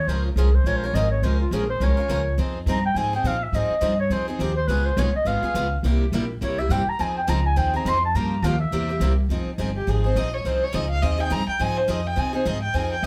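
A breathy, whispered clarinet leads this fiery, bittersweet jazz manouche excerpt in F minor at 208 BPM, its scooped notes and light vibrato carrying the melody up front until 9.2 seconds, when a dark, bowed violin with portamento takes over the solo from 9.8 seconds. Beneath them, a woody, thumpy pizzicato upright bass anchors the swing, while a boxy, fresh-stringed swing-style guitar with finger squeak and a warm dreadnought guitar set further back supply picked accompaniment through chords moving from Bbm7 and Fm7 to Db7, C7 and Gm7b5. The ensemble sits in a moderate studio reverb, heard from further back in the room.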